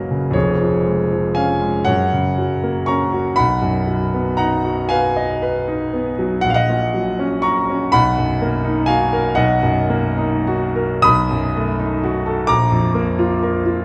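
A grand piano opens the recording alone, with a warm, smooth, vintage tone placed up front in a wet concert hall reverb. This is a romantic classical nocturne for solo piano, yearning and mournful in mood, moving in a slow, rubato 6/8 at roughly 34 to 44 beats per minute counted in dotted quarters. The piano spans from the deep bass up into the high treble, with its harmony drifting from C#/E# through F# and B to F#/A#. A tender Bmaj7 near 7.9 seconds darkens into B7 and then settles on Bb at 12.5 seconds. The passage, tuned slightly above standard pitch, is cut from a longer piece and ends at 13.8 seconds still within its opening section.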